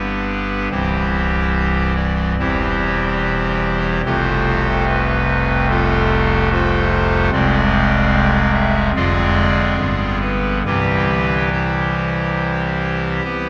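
Moving at 72 BPM in 4/4 with a flexible, rubato feel, this serene and majestic chorale-style classical piece in C major is cut from a longer work and runs about 13.5 seconds. A solo pipe organ speaks through a hollow clarinet reed stop with baroque voicing and a touch of chiff, sitting up front and spanning from C1 to E5. The harmony moves from G to C and F, shades into F minor and a half-diminished chord before settling back through G to C, all held in a resonant church reverb with a 3.7-second decay.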